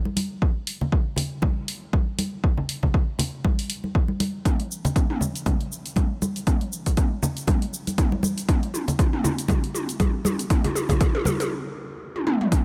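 Driving and earthy, this house excerpt at 119 BPM swings its 16ths as bright, dry congas, a dark-hatted deep house kit with shaker and toms, and a punchy, up-front electronic kick enter within the first half second, building from 4.5 seconds through drum fills before a stop at 11.5 seconds, all in light reverb.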